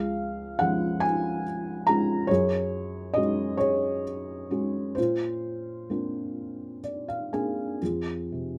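A felt-muted upright piano, soft, boxy and intimate with thick felt and audible action noise up front, plays a melancholic, dark classical excerpt alone in a rubato 6/8 at about 40-47 BPM, tuned to A4 = 435 Hz, moving through Db, Gbsus2, Bbadd9 and Fm with a fill from 6.4 to 7.8 seconds, captured by close, detailed microphones in light reverb.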